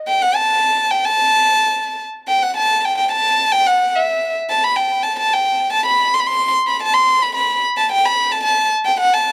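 A single bowed violin plays solo from 0.1 to 9.3 seconds in this bittersweet yet festive klezmer excerpt at 110 BPM in a straight 2/4, its rich, intimate tone shaped by light vibrato, a soft attack and an airy sul tasto bow, sitting up front between E5 and C6 with a touch of analog delay, all captured by close, detailed microphones in light reverb.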